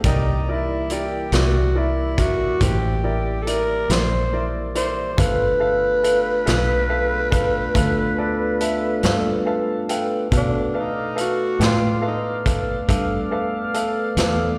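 This slow blues in 12/8 moves at 47 BPM with a soulful, gritty mood, and it is cut from a longer piece that sounds like a live gig heard through the venue's PA in a recital hall. A growling tenor saxophone carries the melody up front, breathy and raspy with subtone, vibrato and scooped notes, its soft attack and slapback echo giving each phrase a jazz-style gritty edge until it drops out at 12.5 seconds. A vintage drum kit of hi-hat, kick and snare sits forward with a saturated, rolled-off top and a tight kick, while a fingered electric bass adds a dark, round, foam-muted low end. Behind them, a mellow tonewheel organ holds clean sustained chords with key click and a slow rotary speaker. The harmony moves from C9 to G9 at 5.2 seconds. A clear, woody upright piano accompanies with slapback echo and steps forward with a polished fill at 9.0 seconds.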